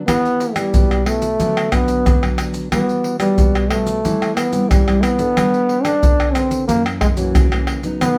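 A nylon-string guitar, thumb-plucked and classical in touch, opens this sunny, joyful samba and choro excerpt in E minor at 91 BPM, joined at once by an up-front, mellow trombone singing a jazz-style solo melody with vibrato and scooped notes, while a close, dry bed of deep surdo, pandeiro, tamborim and maracas struck with hard hands drives the straight 4/4 feel through chords from Em to F#7, all set back in a wet studio reverb.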